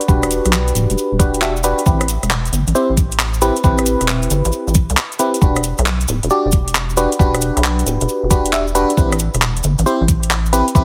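A heavily compressed, radio-style mix with light reverb and digital ambience frames this bouncy, skippy excerpt of two-step UK garage at 135 BPM in E minor, swung on the sixteenths and moving between Em9 and Am9. A knocking electronic kick and a tape-warm garage kit with metallic hats, handclaps and rim clicks drive the groove, while a grainy, bright cabasa sits in the background and a rubbery, hollow square bass with a resonant filter pluck and a moving notch sounds dark and up front. Glassy, bell-like FM electric piano stabs, treated with chorus, phaser, cassette tape character and dub echo, carry a filter sweep throughout.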